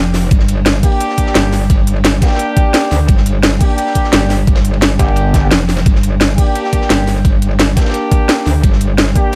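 Aggressive and futuristic, this dark technical drum and bass moves at 173 BPM in straight 4/4, rooted in G minor on a G minor chord. A metallic, wobbling FM bass with chorus and overdrive sits up front from the start, joined at 0.3 s by a knocking, overdriven electronic kick that hits hardest in the mix. The main drum and bass kit brings a cracking snare and crisp hats, also forward and dry, while a gritty acoustic breakbeat kit with dark cymbals and a rolled-off top crunches away in the background under high-pass filtering. From 0.8 s a mellow, distant brass ensemble in classical style adds tape-echoed stabs. At 5.0 s a heavy, pulsing pluck wobble bass with distortion and chorus bursts through on a single G for a brief moment, all within a tight, near-reverbless mix cut from a longer piece.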